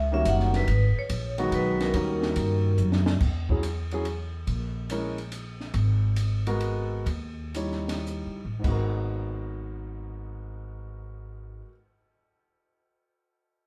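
Smoky and moody, this short cut from a longer small-group swing and bop jazz piece sits in G# minor and 3/4 with a swung feel, moving between 99 and 142 BPM before slowing from 5.7 to 8.6 seconds. A ringing, metallic vibraphone with medium motor vibrato carries the melody only until 2.8 seconds, where a compact cocktail drum kit with a high-tuned snare and punchy kick plays a fill. A woody, thumpy pizzicato upright bass on gut strings and an up-front concert grand with deep bass carry the rich harmony of altered dominants, m7b5 and minor ninth chords through a moderate large-room reverb, and the drums stop at 8.8 seconds.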